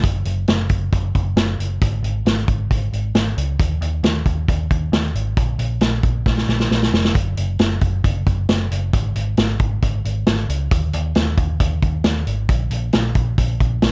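A muted, picked electric bass and a vintage drum kit start together, setting a bittersweet, restless jangly indie pop groove at 135 BPM in a straight 4/4. The bass sits low, ranging from E#1 to D#2, its foam-muted, amped tone dark, round and punchy. Up front in the mix, the acoustic kit of hi-hat, tight kick and medium-tuned snare sounds mid-forward with a rolled-off top, captured in a studio room. A drum fill between 6.3 and 7.2 seconds breaks up the pattern before both parts carry on to the end of this cut from a longer piece. The production is dry and dark, with little reverb and a warm feel.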